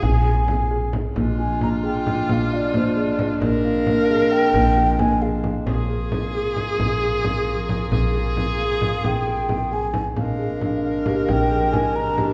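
Shimmering and playful, this excerpt of contemporary chamber music moves in an uneven 5/8 at 267 BPM counted in eighths, with a straight feel in Bb mixolydian. An airy, hollow concert flute carries the melody with vibrato and tongued notes, sounding from the start to 5.6 seconds and returning at 8.6 seconds. A rich, bowed viola, a single player with smooth, even vibrato, sits up front on a second line. A clear, tight woodwind section holds sustained chords in a close-miked classical style, while a kalimba rings out soft, dark arpeggios from fingertip plucks on a woody board. A thumpy pizzicato upright bass on gut strings anchors the low end on Bb, and a small, bright frame drum played with soft hands stays in the background. The whole ensemble sits back in a wet recital hall with a reverb time of 1.6 seconds, moving from Fm/Bb through Bb7 to a closing Bb13.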